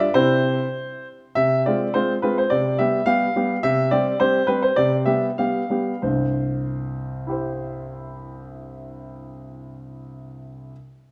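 A moderate recital hall reverb surrounds an up-front concert grand piano, heard in a brief passage cut from a longer classical-period sonatina in C major. The solo piano has a clear, open tone with a deep bass, and it spans C2 to F5 across the full 10.7 seconds. The mood is cheerful and elegant, in 2/4 with a rubato feel, and the tempo sits around 90-108 BPM. The harmony moves from C to F minor over C and G7 over C before returning to C, with C in the bass beneath these changes. From 3.1 to 6.0 seconds the pace slows, and a fresh phrase begins at 6.0 seconds back on the home chord.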